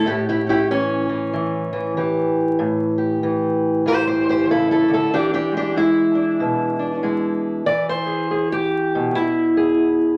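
A loping swing on the eighth notes in 4/4 carries this gritty, laid-back acoustic country blues, cut from a longer piece. A lone fingerpicked steel-string parlour guitar, dark and boxy and sitting up front, plays throughout the 10.2 seconds, moving from A7 to E7 at 5.1 seconds. A wet studio reverb and a layer of vinyl crackle give the sound an aged, roomy patina.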